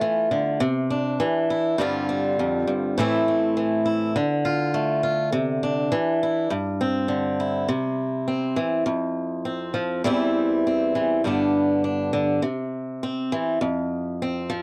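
A dry, close recording with a 1970s studio character and a light touch of reverb puts a single picked acoustic guitar up front, where its boxy, warm tone fills the short stretch cut from a longer piece. This is danceable highlife in 4/4 with a gentle swing on the sixteenth notes, and the guitar carries it entirely alone from 0.0 to 14.6 seconds. It ranges from E2 up to G4 in a swing-style picked part. The opening section moves through Dm, Cadd9, G7sus4 and Am before circling back to Dm and resting on suspended G chords. At 7.7 seconds a second section begins, cycling among C, F5, C/E and G.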